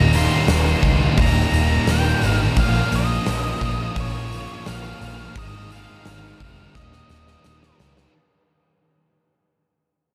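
Wistful and hazy, this short shoegaze and dream pop rock excerpt drifts through a dreamy mix soaked in cathedral reverb, fading out across its full 8.2 seconds. A thick, dark fuzz guitar sits in the background with ensemble chorus, while a biting overdriven guitar plays its riff through reverse reverb. Above them, an octave-fuzz lead guitar carries the melody, its distorted tone trailing a diffuse ambient delay. Underneath, a vintage foam-muted electric bass gives a round, amped low end, and a huge arena drum kit sits up front with a punchy kick and a pumping hall sound, ending in a drum fill from 6.8 seconds. A jingly tambourine adds a very quiet, close and dry touch as the chords move from Eb through Bbm and Ab to Eb7.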